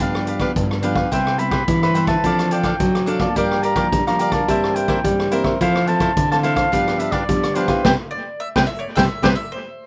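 Samba and choro in a playful, festive mood, this short cut sets a distant, roomy clarinet melody over crisp picked cavaquinho and fingerpicked nylon-string guitar accompaniment, all three touched with slapback echo in a fairly dry space, while a second full-bodied nylon-string guitar carries the bass and a swinging big-band drum kit with a boomy kick, medium-tuned snare and rolled-off top plays beneath, until a drum fill and band accent arrive at 7.8 s and a bright, woody mandolin slips in at 8.1 s with its own slapback echo.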